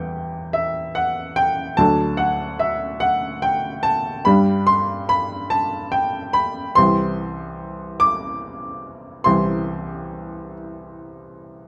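A clear, up-front baby grand piano opens this mournful, yearning romantic nocturne excerpt in a slow, rubato 12/8 at 48 BPM, its natural, short-sustained tone ranging from C2 to D6 over chords moving from Em to D, G5 and C, all set in a moderate large-studio reverb.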